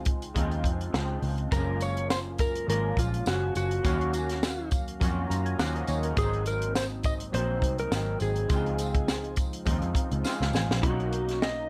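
A dark, compressed slide guitar carries the melody from the start over a bright, twangy guitar through a small old amp with warbly pitch drift, detuned sawtooth analog keys with chorus and phaser that add fills at 5.0 and 10.0 seconds, and a round, foam-muted picked bass, while a compact cocktail kit with a punchy kick and high-tuned snare sits up front and a jingly tambourine enters in the background at 1.5 seconds in this sunny, dreamy indie and bedroom pop cut in Db major at 103 BPM with a light swing.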